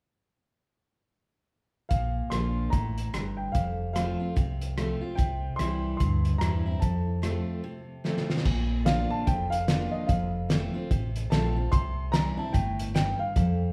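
A swung 4/4 feel at 147 BPM drives this easygoing, heartfelt slice of honky-tonk and classic country in Bb major, carried by a cloth-damped drum kit that sounds thuddy and muffled, with a fat snare, tight kick and gritty, saturated character, alongside a round, punchy fingered electric bass. A bright, up-front picked steel-string acoustic guitar with fresh strings fills in the accompaniment while a dark, woody upright piano with long sustain carries the melody high in its range, all set in a recital-hall reverb. The groove moves through Bb, F and C, pausing for a brief break where a drum fill at 8.0 seconds leads into the second section.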